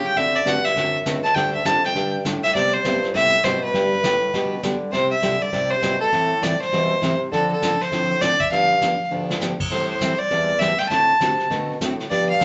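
Swung eighth notes drive this cheerful, playful western swing country excerpt, with a vintage brush drum kit of dark cymbals and a punchy kick, plus a drum fill at 9.1 seconds. An earthy, up-front bowed fiddle with light vibrato carries the melody, while a mellow bassoon plays the bass line and a bright, full-bodied picked steel-string acoustic guitar picks through seventh chords. The whole band sits in a wet club reverb with a soft, rolled-off top.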